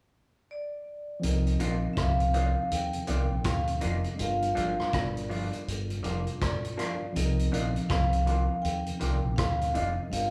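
Smooth and bittersweet, this lovers rock reggae excerpt in C minor moves at a relaxed 81 BPM with a swung sixteenth feel. A ringing, metallic vibraphone carries the melody from 0.5 s, and at 1.2 s the band arrives over Cm11 and Gm7 chords: a round, dark fingered dub bass, a vintage kit of tight kick, hi-hat and rim click with a rolled-off top, and a gritty overdriven tine electric piano with dub echo. A very quiet, mellow tonewheel organ with rotary speaker and lo-fi, slightly broken-up guitar stabs through a phaser fill out the live-room sound, bathed in a lush studio reverb.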